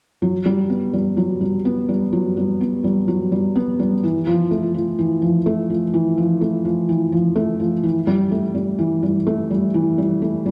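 A felt-muted upright piano sounds at 0.2 seconds and plays alone through to 10.5 seconds, carrying this hopeful, tender electronica fragment cut from a longer piece. The thick felt gives the piano a soft, dark, mellow tone, and its action noise is plainly audible, lending the playing an intimate, close-up quality. It sits up front in the mix, its notes kept to a narrow low-middle register. A scoring stage reverb, set wet, surrounds it with a spacious tail. The piece moves in a straight, even 4/4 pulse, and the tuning sits slightly below standard concert pitch.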